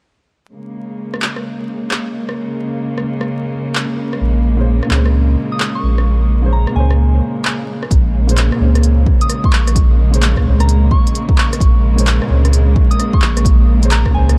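Melancholic and ghostly, this future garage piece swings its 16ths at 130 BPM in Bb minor around a Bbm9 chord. It opens at 0.5 s with a dark, bowed chamber string section holding smooth vibrato chords that pump with the sidechain, soon joined by a deep house kit of handclaps, silky hi-hats and rim clicks. A round sine sub bass arrives up front at 4.2 s, followed by a woody upright piano with tape echo and a soft, pure FM bell melody carrying chorus and analog delay, all over a haze of vinyl crackle and lossy artefacts, before a punchy, layered electronic kick lands up front at 7.9 s.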